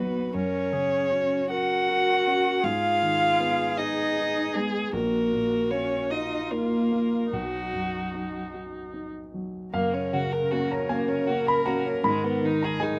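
A rubato 6/8 sway at 51 BPM, counted in dotted quarters with uneven beats, carries this intimate, hopeful neoclassical piece in F# major, cut from a longer work, as the harmony moves through F#, G#m, D#m/A# and B before returning to F# when a new section begins at 9.7 seconds. A single muted violin, played con sordino with vibrato, sings the veiled melody up front, while a single bowed cello, dark and smooth-topped, traces a second line beneath it. A lightly vibrato viola and a warm, short-sustained grand piano, the piano also placed up front, fill in the accompaniment, all set in a moderate studio reverb.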